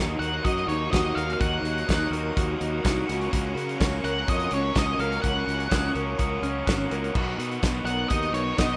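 Over a straight 4/4 pulse at 125 BPM in F# major, this wistful, carefree indie rock fragment moves from D#m through F#/C# to Bmaj7, with a loose, up-front drum kit and a growly fuzz bass under two picked riffs: a bright, overdriven guitar and a dark, slightly broken-up guitar through a small old amp with ensemble chorus and tape echo. A distorted octave-fuzz lead carries the melody from 0.2 seconds, while a very quiet, shimmering string machine holds vintage violin chords, a saturated tambourine jingles from 0.9 seconds, and a mellow, bell-like glockenspiel played with rubber mallets rings softly in the background from 1.9 seconds, all in a rough home demo mix with light reverb.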